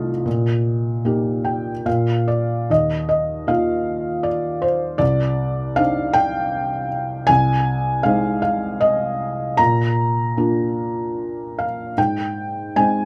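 A felt-muted upright piano plays alone in this calm, peaceful classical excerpt, its soft, mellow tone sitting up front with audible action noise that makes the sound feel intimate and natural. In Eb major at 77 BPM in 3/4 with a rubato feel, a brief fill from 1.0 to 2.7 seconds leads into a lyrical passage moving through Ebsus2, Cmadd9, Ab/C, Bb and Ab. Close, detailed microphones and light reverb capture its range from C2 to Bb5 across the short span.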